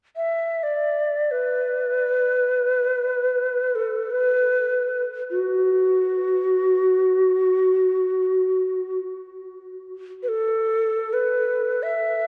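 This world meditation excerpt, in free time and B minor pentatonic with tuning at A4 = 442 Hz, carries a spacious, contemplative mood. A lone Native American-style cedar flute plays from 0.2 s to the close at 12.3 s, ranging between F#4 and E5, its breathy, hollow wooden tone shaped by soft attacks, gentle vibrato and rolled-off highs. The flute sits up front, wrapped in a cathedral reverb with a 5.7-second tail that suggests a vast, echoing hall.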